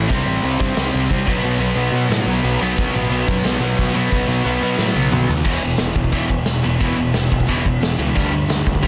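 Punk rock fragment with a rebellious, upbeat drive, where three picked guitars (a biting overdriven one, a crunchy double-tracked one and a bright distorted one) play riffs behind a growling overdriven bass and a loose, roomy acoustic kit up front with dark cymbals, a punchy kick and a softly clipped snare, holding a half-time feel until a drum fill from 4.8 to 5.5 seconds launches the second section, all in a dry, dense, heavily limited mix.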